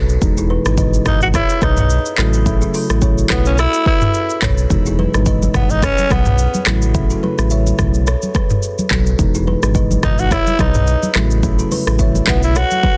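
This excerpt sounds dry and dense, with a heavily limited modern master that keeps every part close. It is a joyful, romantic afrobeats groove at 107 BPM in 4/4 with a light 16th-note swing, moving between Emaj7 and A6 in E major. A deep, sine-like sub bass doubled at the octave and an electronic afro-pop drum kit with a deep kick, crisp hats, handclaps, shaker, toms and rim clicks drive it from the start, the snare lightly clipped. A woody, hollow kalimba riff with digital delay rings above a mellow, clean tine electric piano that sets the harmony, both sounding from the opening moments. A raspy, growling tenor saxophone carries the jazz-style melody up front from 1.1 to 6.7 seconds and returns at 10.0 seconds, its delay trailing behind it. Thick-skinned congas under soft hands join quietly in the background at 4.7 seconds, adding acoustic texture to the produced beat.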